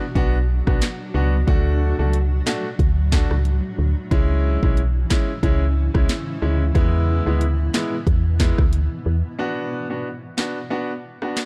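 Dancehall at 91 BPM in B dorian, hypnotic and bouncy, with a swung sixteenth feel over Bm, D, C#m and E in a dark, warm production. A bright, polished concert grand piano plays accompaniment while a blurred, evolving granular cloud pad holds sustained chords with built-in reverb and sidechain pumping, and an up-front woody FM bass with a round, decaying tone sits beneath. An electronic afro-pop kit with deep kick, sharp snare, hi-hat, rim click and handclaps drives throughout, then carries a break with the piano from 9.4 seconds after the pad and bass drop out.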